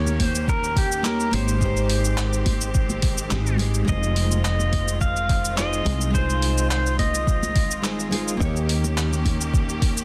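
Wistful and relaxed, this 10-second excerpt of sunset chillout in F minor at 106 BPM sets a twangy pedal steel guitar melody with digital delay, played with fingerpicks and volume swells until 8.1 seconds, over fingerpicked nylon-string guitar with tape echo and audible finger squeak, lush bowed symphonic strings holding chords, a growly, round fretless bass with tube saturation, a gritty overdriven sampler-style kit of cabasa, handclaps and hi-hat, very quiet soft-handed congas and a soft, tape-warm electronic kick, moving through Eb7, Abmaj7 and Fm7 in light digital ambience with a dense, heavily limited master.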